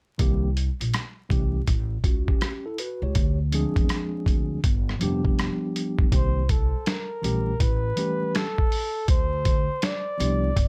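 A swung boom-bap groove from a gritty, pitched-down sampler kit with a thumpy kick and rim clicks anchors this smoky, mellow jazz-hop fragment, as a woody, growly pizzicato upright bass and an up-front tine electric piano carry the chord changes under vinyl crackle in a dry, close sound, until a breathy, whispered flugelhorn enters at 6.1 seconds with an intimate, vibrato-laden solo line.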